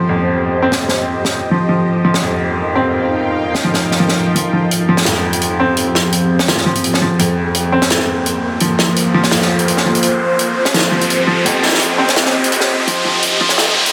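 A tense, nasal drone of detuned, string-like sawtooth tones and a muted upright piano playing soft, mellow arpeggios open this dark, spacious half-time drum and bass excerpt together, while a filter sweep moves over the drone. The piano sits up front with a thin felt tone, short sustain, vintage 12-bit sampler grit and a delay, and the bright, bowed-like drone holds sustained chords with slow attack, vibrato, a noise layer and its own reverb. At 0.7 seconds an acoustic drum kit enters close and natural, with hi-hat and a medium-tuned snare that carries soft clipping and high-pass filtering. From 4.4 seconds the music builds under another filter sweep, and an electronic riser joins at 7.4 seconds to push toward the cut. A huge ambient reverb opens up the space, and the dense, heavily limited modern master keeps the mix loud and forward.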